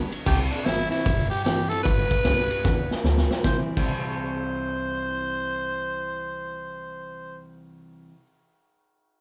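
A live-in-one-room rockabilly excerpt in a moderate large studio reverb, rowdy and rollicking at 151 BPM with a 4/4 swing in C major, where a raspy, growling tenor saxophone leads up front over a full-bodied picked jumbo acoustic guitar, a woody, thumpy pizzicato upright bass on gut strings, and a saturated vintage drum kit with dark cymbals and a tight kick that plays a fill at 2.6 seconds and stops at 3.9 seconds.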